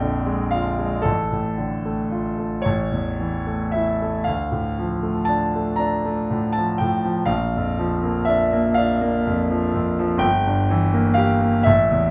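A bright concert grand piano opens alone, up front, on a Bb7 chord with deep bass and long sustain, in a romantic classical nocturne in 6/8 with free, rubato phrasing. The mood is melancholic and yearning, with the harmony moving through Dm/A, A, Dm and Bb before arriving at Edim/G near 10.2 seconds. A moderate large-studio reverb surrounds the open, brilliant tone of the solo piano across this short passage cut from a longer piece.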